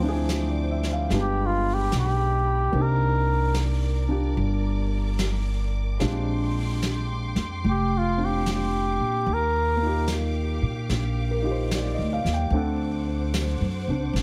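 This melancholic, intimate jazz ballad opens on a baby grand piano playing polished, present accompaniment, an upright bass with a woody, thumpy gut-string pizzicato sitting up front, and a dark symphonic string section holding lush, bowed chords that sound distant. At a slow 74 BPM in 4/4 with a swung eighth-note feel, a brush kit enters at 0.3 seconds with brushed snare, hi-hat and a medium-tuned snare in a studio room. At 1.2 seconds a cup-muted trumpet takes the melody as a soloist. Its tone is veiled and breathy, with a soft attack, light vibrato and a smooth top, and it is bathed in plate reverb. The trumpet carries the melody until 10.1 seconds over a harmony that moves from Dm7b5 and G7b9 to Cm9, Bb13 and Ebmaj9, and the chords then turn to D7 at 12.5 seconds. The whole excerpt has a heavily compressed, radio-like sound with light reverb, as if cut from a longer performance.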